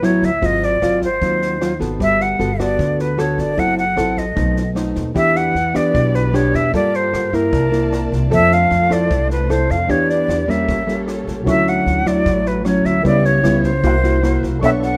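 An airy, vibrato-laced jazz flute carries the melody up front over dark fingerpicked nylon-string guitar, woody pizzicato upright bass and a dry cocktail kit of tight kick, rim click and high-tuned snare in this relaxed, sunny bossa nova, with lush, very quiet bowed strings entering at 5.2 seconds and a warm background baby grand piano joining at 11.4 seconds, all in light reverb over rich jazz harmony.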